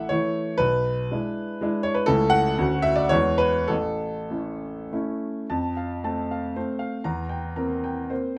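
Heard in a moderate studio reverb, a smooth, vintage-toned grand piano sits up front as the sole voice in this brief cut from a longer classical piece, a rustic and graceful romantic dance in 3/4 and A major with dotted rhythms and a rubato feel between 96 and 132 BPM, spanning A1 to Bb5 as its harmony moves through A, E7/B, Dmaj7 and E before shifting to F at 5.5 s and closing on C7/E.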